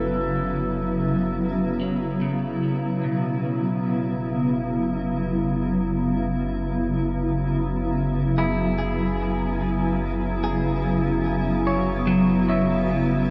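This excerpt opens on a granular cloud pad holding sustained chords, its blurred, evolving texture bright and up front, with a filter sweep on it running throughout, while a round analog bass sits deep and dark beneath on F#1. It is melancholic, spacious ambient music at 73 BPM in a straight 4/4, moving from F#7(omit3) to C#m7/F# at 3.0 seconds. A clean electric guitar enters at 1.8 seconds, fading in across the whole passage as it picks twangy, scooped arpeggios spanning B2 to E5 through a diffuse ambient delay. The pad carries its own built-in reverb, while the recording as a whole is bathed in a huge, wet ambient reverb with a 7.5-second decay. A worn cassette-tape character adds a warbling pitch drift, lending the sound a hazy, aged quality.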